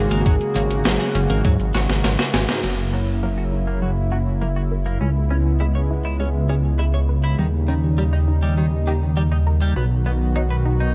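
Synthwave with a driving, moody feel, this excerpt opens on a soft octave-layered synth lead carrying the melody in the background until 2.0 s, while a dark, rumbling detuned saw bass sits up front and a shimmering chorused pulse-width pad holds sustained chords with sidechain pumping. A round, nasal analog pluck plays arpeggios through chorus, phaser and delay, and a twangy twelve-string electric guitar picks a riff bathed in lush chorus and delay, with a filter sweep on the guitar from 2.6 s. Up front, a gated 80s digital drum machine with gated reverb on the snare and a thumpy electronic kick drive the opening under light reverb, and after a drum fill the drum machine stops at 2.8 s as the music moves into a new section on an F#7 chord.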